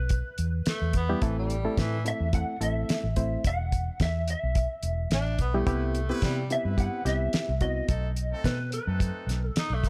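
A straight-eighth soul-blues groove with a light sixteenth swing rides on a dry, cloth-damped drum kit with a fat snare and tight kick and a round, foam-muted fingered bass, while a mellow, compressed electric guitar with a chorus effect carries the mournful melody, a raspy, distant tenor saxophone adds a second line from 0.7 seconds, a worn, slightly out-of-tune reed electric piano provides accompaniment until 7.9 seconds, and a brilliant horn section holds octave-doubled chords from 5.7 seconds, the brooding excerpt set in a small room.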